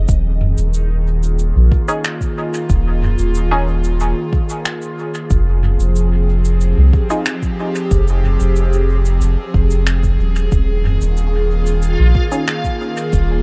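A dry, echo-heavy mix carries this meditative, spacious ambient dub excerpt at 92 BPM in 4/4, where a round, up-front sub bass and an airy, breathy pad with chorus and phaser hold Ebsus4 and Fm chords beneath a soft, tape-warm electronic kick and a small-room electronic kit of cabasa, finger snaps and toms trailing dub echo, while a muted, detuned filtered chord stab with lush chorus and dub echo sounds from 1.9 to 7.2 seconds and a bright, reversed granular texture swells back in at 11.1 seconds.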